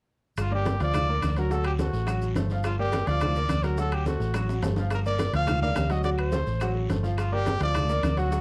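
A clear, smooth-topped solo trumpet sings a vibrato-tinged pop-style melody up front in this driving, danceable salsa excerpt in G minor at 211 BPM, riding over a round, punchy hollow-body electric bass, a bright baby grand piano with audible action noise and short sustain, ringing low-tuned congas and metal-shell timbales set back in the mix, tight high-tuned bongos, distant woody claves, a raspy guiro and grainy maracas, all swaying between Gm7 and D7 in a dark production with a brief drum fill at 4.3 seconds.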